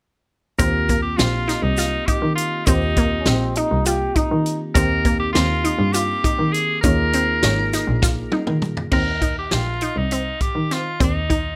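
A bright, forceful tenor saxophone carries the jazz-style melody with vibrato through this driving, intricate progressive band excerpt in 7/8 at 202 BPM in Eb major, its tone touched by digital delay. Beneath it, a bowed double bass and a punchy, rolled-off vintage drum kit sit up front, while a squelchy, resonant synth pluck with chorus spins arpeggios, a barky, lightly overdriven tine electric piano and a grainy egg shaker stay in the background until 8.9 seconds, and a mellow flugelhorn with scooped notes adds a brief second line from 3.2 to 4.6 seconds. A drum fill at 8.0 seconds leads into a new section, all in a light reverb.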